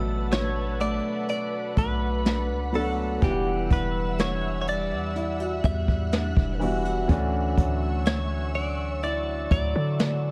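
Contemporary R&B at a slow 62 BPM in 4/4 with a straight feel, this moody, longing passage is cut from a longer piece and tuned slightly flat to A4 = 437 Hz, moving through Bm7, Em9 and Dmaj9. A deep, boomy 808-style bass sits up front with fast-attack, decaying sine notes, while a jazz kit played with brushes supplies a smooth snare, a boomy kick and hi-hat from 0.3 seconds, its top rolled off. A dark, intimate baby grand carries the accompaniment with long sustain and audible action noise, joined by a fingerpicked flamenco guitar whose arpeggios bring finger squeak. The melody comes from a direct-recorded, clean, compressed electric guitar, picked and treated with analog chorus and tape echo. Above them an ethereal, airy pad holds slow-attack detuned chords with ensemble chorus and built-in reverb, and a chiming, inharmonic FM synth rings in the background with tape echo until 3.7 seconds, all set in a small room ambience.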